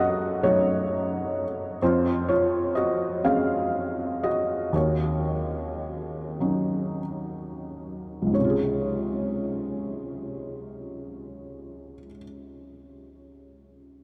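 A vast, echoing space wraps this short excerpt from a longer piece in a huge, lingering reverb, while a felt-muted upright piano sits up front with a soft, mellow, intimate tone, carrying the melody across a range that spans deep bass notes and the upper register for the full 14 seconds. The mood is heartfelt and tender, a slow folk piece in Db major and 6/8 at 28-43 BPM that slows down from 1.8 to 8.4 seconds as the harmony moves through Gbm6, Dbmaj7/F and Ebm7. At 8.4 seconds it arrives on a Dbmaj7 and opens a new section.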